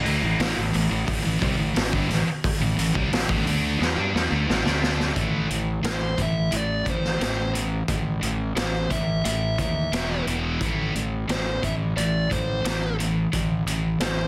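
A straight 4/4 pulse at 88 BPM drives this heavy, aggressive hard rock excerpt in A minor, tuned slightly flat to A4 = 436 Hz. Two rhythm guitars play the riff throughout: a bright, scooped high-gain guitar with distortion and a sludgy overdriven guitar sitting in the background, both spanning E2 to D4. Beneath them, a fingered electric bass with growly fuzz and overdrive sits up front, while a raw garage drum kit of hi-hat, kick and snare brings a boomy kick, a medium-tuned snare and a gritty, saturated small-room sound with a rolled-off top. A drum fill from 3.8 to 5.2 seconds leads into the second section, and at 5.9 seconds a dark, smooth lead guitar enters with an overdriven melody between C5 and E5, trailed by analog delay. The harmony rests on A minor, moves briefly to an E5 power chord at 9.9 seconds and returns to A minor, all wrapped in light studio reverb and a dense, heavily limited modern master.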